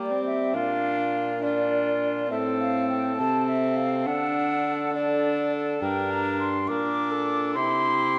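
Classical renaissance-style consort dance in 6/8 at 68 BPM in G dorian, solemn and courtly, cut from a longer piece and lasting about 8.2 seconds. A hollow, airy silver concert flute carries the tongued melody, while a distant, soft-attacked cor anglais sings a second line, a close, nasal viola with gut-string tone supplies bowed accompaniment up front, and a warm bassoon with light vibrato anchors the bass. The quartet sits in a wet recital hall reverb beneath a layer of vinyl crackle, moving from Gm through Bb, Am and D and back to Gm before settling on C.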